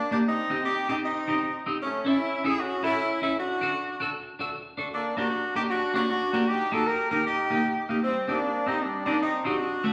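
Energetic and mischievous, this brisk ska excerpt at 154 BPM swings its eighths as a clear, punchy horn section with vibrato and a smooth top carries a loose, pop-style melody up front, while a dark, picked clean electric guitar with tube saturation and phaser accompanies through changes from Cm to A, D, Gm and Eb, the band playing live together in one room bathed in a large, wet studio reverb.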